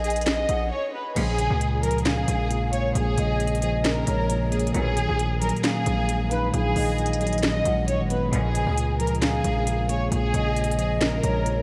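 Brooding and hard-hitting, this half-time trap excerpt sets a lush, vibrato-rich symphonic violin melody up front over a breathy, hollow flute second line. A saturated, aggressive 808-style bass and crisp, sharp-snared trap drums hit underneath, with a mellow tine electric piano entering at 1.2 seconds after a brief break, while very quiet bowed string stabs sit deep inside a dreamy, reverb-soaked mix.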